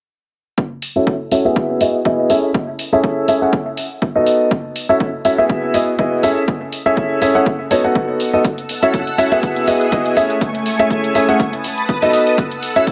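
A swung 4/4 groove at 122 BPM opens at 0.6 seconds with a punchy, tape-warm electronic kick, joined at 0.8 seconds by an analog hi-hat, both re-recorded in a small room and driving this bittersweet, energetic piano house excerpt in F# dorian. From 1.0 seconds a woody, intimate upright piano with audible action noise plays an up-front riff through F#m7, Emaj9, Amaj7 and B7, pumping against the kick under a filter sweep and analog delay. At 8.4 seconds a silky, chorused string pad with slow attack and vibrato adds sustained chords, all set in an echo-heavy mix with moderate spring reverb.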